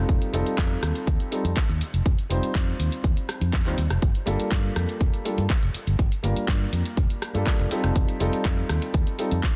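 Nu-disco at 122 BPM in a straight 4/4, this short cut from a longer piece has a sensual, sleek mood. A punchy electronic kick sits up front, joined by a house drum kit of handclaps, hi-hat, rim click and shaker, both with a tape-warm character and re-recorded in a small room. A fingered electric bass run through an envelope filter sounds bright and amped, with sidechain pumping giving it movement in the low register. A smooth, vintage baby grand piano plays accompaniment, softened by a low-pass filter and trailed by delay, moving from F7 to Gm7 at 4.0 seconds and back to F7 at 7.7 seconds. Light reverb and digital ambience frame the parts, and the dense, heavily limited modern master keeps the sound full and forward.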